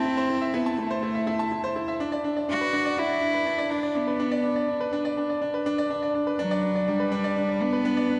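Over a straight 4/4 pulse, this hypnotic, moving electronica fragment pairs a brilliant, up-front concert grand piano riff with deep bass weight and a dark, reedy bowed cello melody of nasal gut-string, period-style tone and light vibrato, both touched by digital delay across the full 8.2 seconds, as the harmony shifts from Am to a rootless E7(no3) at 2.0 seconds inside a wet concert hall reverb with a softened top end.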